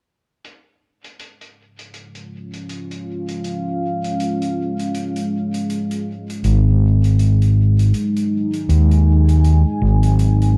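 A distant, roomy acoustic hi-hat opens this meditative, hazy piece of ambient dub at 0.4 s, softened by low-pass filtering and sitting far back in a studio room. At 2.2 s a deep, moody pad fades in with sustained chords, its detuned sawtooth and sine layers thickened by a sub octave, chorus and its own reverb, while a filter sweep shapes it throughout. The tempo is a relaxed 80 BPM in 4/4, with a gentle swing on the 16ths. At 6.4 s an overdriven, fingered electric bass enters, round and up front, just as the harmony moves from C# to G#5. The production is dark and warm with light reverb and studio ambience, and this short excerpt is cut from a longer piece.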